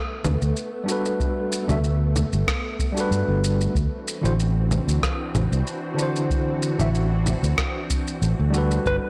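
A blown-out, overdriven recording with light reverb and digital ambience carries this smooth, warm sunset chillout excerpt at 94 BPM, its 16ths gently swung over a move from Gmaj9 to D9 at 3.8 seconds. Silky, chorused string-machine chords and a clean tine electric piano with tape echo join a dark, round, punchy fretless bass with tube saturation, while gritty, sampler-style congas, shaker and rim click are joined at 1.2 seconds by a dry, deep electronic kick. A mellow, compressed electric guitar touches a single note up front at 8.9 seconds, just before the end.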